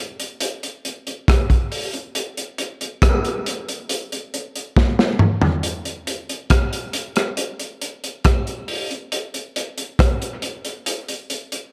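A crunchy breakbeat drum kit opens this short reggae excerpt, its kick, snare, rim click, hi-hat and toms settling into a deep, meditative straight groove. The kit sits up front and sounds dark, gritty and saturated, with a tight kick, a medium-tuned snare and a rolled-off top, all in a small room and a moderate plate reverb. A drum fill from 4.8 to 5.6 seconds leads into the second section, which runs to the end at 11.7 seconds.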